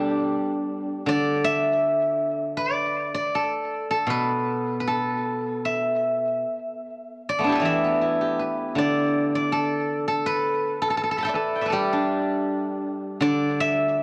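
The rhythm moves freely in rubato over a loose 4/4 pulse, giving this short Chinese traditional passage a flowing, pastoral calm. A lone steel-string zither carries everything as a solo from 0.0 to 14.0 seconds, played with fingerpicks and ranging from B2 up to B5. Its acoustic tone is warm, ringing and silvery, sitting up front in the mix, and a tape echo trails behind its notes. A wet small-room reverb surrounds the sound, while the worn, warbling cassette quality adds a gentle pitch drift that lends the recording an aged character. The clip is cut from a longer piece, so it reads as a fragment of a larger work.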